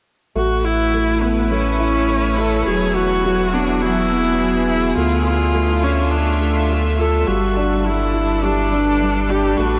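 From 0.4 s, a felt-muted upright piano plays a dark, intimate riff with audible action noise, washed in lush chorus, shimmer reverb and diffuse ambient delay, while a round sine sub bass with tube saturation sits up front and a rich, floating studio string section holds soft-attack bowed chords. Over this, a single expressive viola carries the melody with vibrato and portamento, its shimmer reverb adding glow, as the harmony moves through A, Eadd9, Dm and G6. This luminous, tender electronica fragment is steeped in a huge ambient reverb that gives the whole mix a dreamy, soaked quality.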